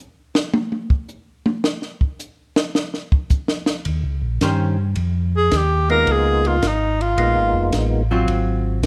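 A breathy, whispered tenor saxophone carries the melody with scooped notes and vibrato from 5.4 seconds in this greasy, swinging soul jazz organ trio excerpt at 108 BPM. It is joined by a fat, percussive tonewheel organ with key click, chorus vibrato and a slow rotary speaker. A compact cocktail drum kit with a high-tuned snare and tight kick plays alone from 0.3 seconds until a round, mellow tonewheel organ bass enters at 3.9 seconds over Eb13 and Db13 chords, while a clean, picked hollow-body archtop guitar adds brief accompaniment and light reverb gives the small-room sound an intimate feel.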